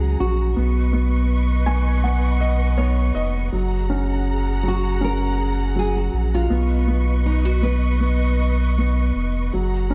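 Pop in a tender, heartfelt mood, this short excerpt moves at 80 BPM in a straight 4/4, cut from a longer piece. A fingerpicked nylon-string guitar carries the melody with fresh strings and a deep classical tone, playing from the start until 9.1 seconds. A clear concert grand piano with a slightly worn, natural character and short sustain provides accompaniment, adding a fill between 1.3 and 3.5 seconds. A studio string section holds sustained bowed chords with vibrato, portamento and a smooth top, while a deep, full sub bass with octave sits up front with a fast attack. The harmony alternates between F#add9 and Badd9, and the production is dark and warm, set in a small room with light reverb.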